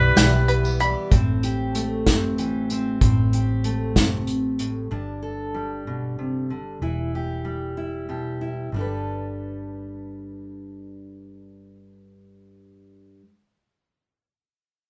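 Recorded live by a band in one room with light reverb, this anthemic, hopeful indie folk passage in 6/8 at 63 BPM and G major opens with a distant, classical-style trumpet with light vibrato, a bright, shimmering twelve-string acoustic guitar and a twangy bluegrass banjo, soon joined by up-front unplugged drums played with bundle sticks and a very quiet, jingly tambourine, while a dark, round hollow-body electric bass runs throughout and a full-bodied fingerpicked steel-string guitar carries the accompaniment from 1.1 s as the chords move through Em, Am7 and Gadd9.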